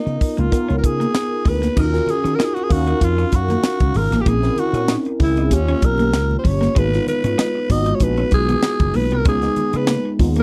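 Glossy and urban, this polished 1980s jazz-funk pop excerpt moves at 96 BPM in 4/4 with a light swing on the sixteenths, cut from a longer piece. Up front, a growling alto saxophone carries the melody with a breathy subtone, raspy grit, scooped notes and light vibrato, its close-miked tone thrown back by a slapback echo. A mellow tine electric piano, softened by analog chorus, supplies the harmony through changes such as C#13, D#m7, A#m7b5 and G#m7, while a dark, picked clean electric guitar plays a riff in the background with a subtle chorus. The slap bass, bright and punchy through its envelope filter, sits beside a tight funk kit of crisp kick, high-tuned snare, hi-hat and crash that stays prominent in the mix. From 1.8 seconds, very quiet low-tuned congas played with soft hands join in. The sound is dry and close, in the manner of a 1970s studio recording with little reverb.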